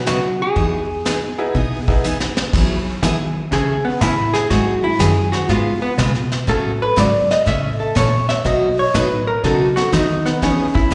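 Swinging and down-home, this western swing excerpt moves at 122 BPM in E major with a loose shuffle feel. A dark, clean hollow-body electric guitar sits up front carrying the melody, compressed and picked, and takes over as a solo from 2.5 seconds to the end. Underneath, a bowed cello plays the bass line with a woody, boxy tone, vibrato and portamento, while a full-bodied jumbo acoustic guitar is picked for accompaniment. A jangly, metallic tack piano adds short, percussive accompaniment only during the opening two seconds before a brushed drum fill leads into the solo. The vintage brush kit has a punchy kick, high-tuned snare and dark cymbals, and slapback echo colors the guitars, piano and drums as the chords travel from Eadd9 through Amaj7, G#7 and B7. It all sounds like a live gig heard through a venue's PA, with moderate club reverb and a rolled-off, muffled top end.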